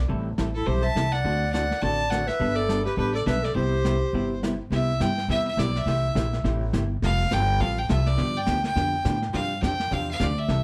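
A woody upright bass opens this playful western swing excerpt at 0.0 seconds, its plucked gut strings thumpy and up front, joined almost at once by a clean, compressed hollow-body electric guitar in a dark accompanying role and a smooth brush kit with a medium-tuned snare and a rolled-off top. At 0.6 seconds a bright, earthy fiddle takes the melody, bowed by a single player, alongside a breathy clarinet that plays a mellow second line with light vibrato and a subtone jazz-style character. The clarinet drops out at 4.4 seconds, leaving the fiddle to carry the tune over the rhythm section. The swung eighths give the excerpt a swinging, playful feel, while the drums sound as if they were set in a small room. A light reverb adds a touch of space to the mix.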